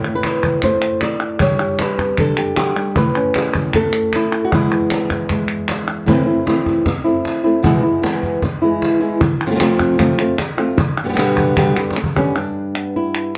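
A dark, fingerpicked flamenco guitar opens this intense, dramatic fragment up front with plate reverb, joined at once by crisp, close palmas and, at 0.2 seconds, a snappy cajon with snares, all driving a straight 4/4 at 154 BPM. The guitar leads the melody over chords moving from Amadd9 through Gsus2 to A and E, then Am, E, F and G. The claps drop out at 6.1 seconds and return at 9.2, and the cajon plays a fill just before it stops near 12.3 seconds, leaving guitar and palmas to close in a dark, warm studio sound.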